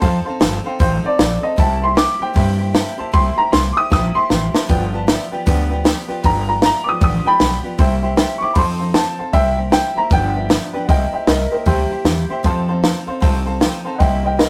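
Rollicking and rowdy, this rockabilly cut from a longer piece moves at 155 BPM in 4/4 with a swung eighth-note feel, centered on C mixolydian over dominant chords like F7, C7 and G7. A dark, mellow upright piano carries the melody from 0.8 seconds, its solo running until 10.9 seconds, while a second piano part with long sustain fills in the accompaniment. A picked steel-string acoustic guitar with a bright, full-bodied dreadnought tone plays along underneath, and a pizzicato upright bass with gut strings sits up front, thumpy and woody. The compact cocktail drum kit is dry and punchy, with a high-tuned snare, and it plays a fill between 3.9 and 4.7 seconds. The whole take has the rough, lightly reverberant character of a rehearsal-room recording.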